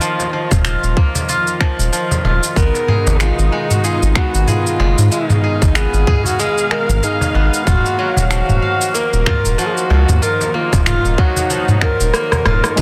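The recording has a dense, heavily limited modern sound with a light small-room reverb, and this excerpt is cut from a longer organic downtempo piece with a meditative, warm mood and a gently swung 16th-note feel. A tight, tape-colored electronic kick and an up-front organic electronic kit of cabasa, crash, finger snaps, rim clicks and toms drive the groove, with soft clipping on the snare. A woody cajon played with soft hands sits distant in the background, while a round, deep analog bass with a filter sweep pumps under the kick. A silvery, fingerpicked steel-string zither rings out arpeggios through tape echo and shimmer reverb, and a clear symphonic string section holds smooth, lightly vibrato chords that also pump and shimmer. At 2.6 seconds a dark, close kamancheh enters with a bowed, sliding melody through digital delay, a drum fill arrives at 12.1 seconds, and a single warbling, detuned chord stab with chorus and cassette-tape color lands at 12.8 seconds.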